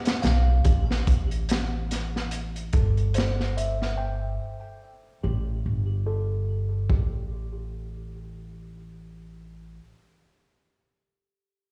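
A gently swung trip hop groove from a crunchy, gritty breakbeat kit with a tight kick and rolled-off top carries this melancholic, smoky fragment, while a delicate, tinkling music box plays filtered, delayed arpeggios through a filter sweep and a woody, growly pizzicato upright bass sits up front, carrying on alone from 7.7 s until 9.8 s, the mix sounding as if played through a big sound system in a bare stone room.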